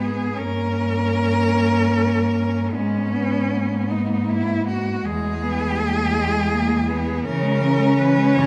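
Yearning and solemn, this brief classical passage for four bowed cellos in a rubato 6/8 sets an expressive, up-front melody cello with warm vibrato and portamento over a rich, smooth second line in the background, a dark, close accompanying cello gliding expressively between notes, and a woody bass cello, all in a moderate recital hall reverb as the harmony moves from Gdim through G#m and E to C#m.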